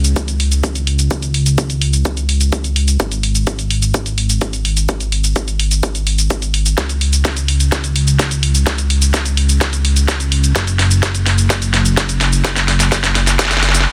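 A straight 4/4 pulse at 127 BPM drives this powerful, euphoric festival progressive house build-up, cut from a longer piece. A punchy, layered electronic kick drops in at 0.2 seconds beneath an up-front pop drum kit of cabasa, hi-hats and a fat snare, and a drum fill carries the build from 6.8 seconds onward. Underneath, a thick, detuned sawtooth analog bass with a saturated, evolving filter pluck pumps against the sidechain, all pressed into a dense, heavily limited modern master with little reverb.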